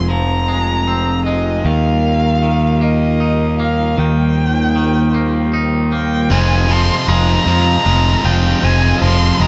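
Rock in F minor at a slow 52 BPM in 6/8, this melancholic, brooding excerpt sets a distant, woody violin melody with vibrato and tape echo over a silky, detuned analog string pad, clean twangy guitar arpeggios with tape echo, and an up-front fuzz bass, moving from Fm to Eb before a bright, scooped distorted guitar riff enters at 6.3 seconds to build back to Fm in a dry, dark production.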